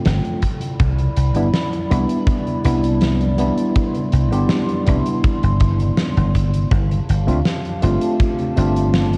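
Dreamy and faded, this short vaporwave fragment drifts in a straight 4/4, moving from Cmaj9 to G9sus4 at 6.7 seconds. A worn, slightly out-of-tune tine electric piano with light overdrive, subtle chorus and analog delay sits up front beside a bright, foam-muted thumbed slap bass that enters at 0.1 seconds, while a warbling, detuned tape-like pad with slow attack and long release hovers dark and nostalgic above. A huge arena kit of cabasa, hi-hat and fat snare booms through gated reverb, joined by a punchy big-room kick from 0.4 seconds, all carrying the soft haze of cassette tape, light reverb and studio ambience.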